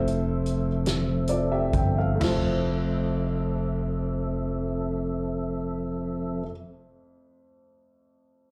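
A slow gospel sway in 6/8 at 40-54 BPM, slowing through the opening 2.2 seconds on an Fmaj7 in F major, this short, jubilant, soulful clip heard through a club PA pairs a woody upright piano with audible action noise, a mellow, flute-like tonewheel organ turning on a slow rotary speaker, and a round, punchy fingered electric bass. A natural drum kit with a fat snare and punchy kick plays only until 2.5 seconds, the organ and bass hold on until 6.4 seconds, and the piano alone carries on to 8.5 seconds.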